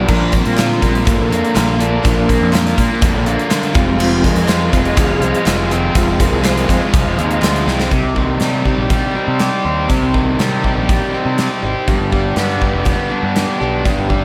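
A double-tracked, distorted electric guitar riff opens this gritty, driving classic rock passage up front, joined at once by a punchy, fuzz-drenched picked bass, a dreadnought acoustic guitar picking in the background, and smooth tonewheel organ chords swirling through chorus vibrato and a fast rotary speaker. A gated 80s drum kit with bright cymbals, a medium-tuned snare and a punchy kick drives hard in an airy stone room, while very quiet, crisp, saturated group handclaps sit beneath until about 7.5 seconds. The organ drops out at 7.4 seconds, and a drum fill at 7.7 seconds leads into a second section built on Cm and G.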